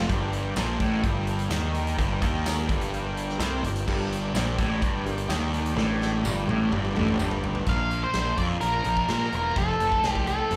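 A brooding, driving classic rock passage in G minor at 127 BPM opens on a heavy G minor riff, with a sludgy distorted guitar and an overdriven semi-hollow guitar with phaser set in the background, alongside the shouting, key-clicking chords of a bright tonewheel organ turning through a slow rotary speaker, while an up-front fuzz picked electric bass with a warm, fuzzy tone anchors the low end. A big rock drum kit with bright cymbals, a medium-tuned snare and a tight kick comes in at 0.1 seconds, joined soon after by a jingly tambourine in the background. A dark, woody and slightly detuned upright piano adds very quiet accompaniment from 3.9 seconds, and the drums play a fill that carries the groove into the change at 7.7 seconds. There the harmony moves to Bb and then Fadd9, the semi-hollow guitar, organ, tambourine and piano drop away, and an up-front octave-fuzz lead guitar with slapback echo takes the melody between A4 and F5. 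The whole performance comes across as a live club gig heard through the venue's PA, with light reverb and room ambience around the band.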